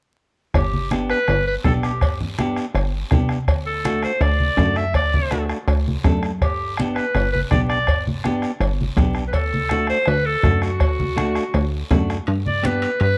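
A straight 4/4 cumbia groove, joyful and sunny, rolls along on a soft-beaten bombo, low-tuned congas with hard hands and ringing cowbell and timbales set back in the mix, a raspy guiro and a punchy, funky analog bass with a fast-attack filter pluck up front, while a bright, classical-style solo clarinet leads over a twangy, picked clean electric guitar as the harmony moves between G and D, framed by a dark production with light reverb and vinyl crackle.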